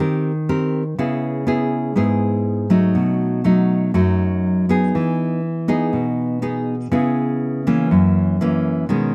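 Bossa nova at 121 BPM with a romantic, relaxed mood, carried by a solo nylon-string guitar that is fingerpicked, full-bodied and placed up front, with a deep classical tone and audible finger squeak. The short passage, cut from a longer piece, opens on a rootless Abmaj9 before moving through Dbm7, B7 and Emaj7, back to Dbm7 and then Gb7 from 1.0 seconds to its close at 9.1 seconds. Light reverb gives the guitar a gentle sense of space.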